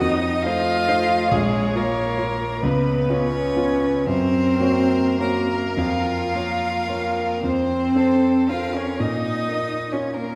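Heard from further back in a reverberant scoring stage, this short fragment of a slow romantic movement for piano quartet carries an elegiac, yearning mood in Bb minor. It moves in a rubato 6/8 at roughly 33-47 BPM in dotted quarters, tuned slightly above standard pitch at A4 = 441 Hz. One violin carries the melody with a rich, smooth, vibrato-laden bowed tone, while a second violin and the cello add supporting lines; the cello sounds focused, with a smooth top, and sits a little more prominent than both violins. The dark grand piano has a mellow, vintage character and long sustain, and it supplies the accompaniment from up front. The harmony passes through F7, Bbm, Db7 and Gb before settling on F and returning to Bbm at 9.0 seconds, where the second violin drops out and a new section begins, with the other three parts continuing to 10.4 seconds.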